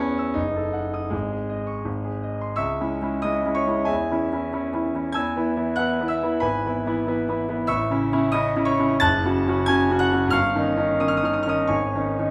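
Heard through a wet recital-hall reverb with a 1.4-second decay, this stormy, brooding romantic character piece for solo piano is cut from a longer work: a bright concert grand, brilliant and up front with deep bass and long sustain, plays across 12.3 seconds in C# minor at a rubato 78-97 BPM in 2/4, tuned to A4 = 437 Hz, opening on D#dim/F# and a G# suspension before a new section at 2.6 seconds passes through C#m, E, A and F#m to settle on G#sus4.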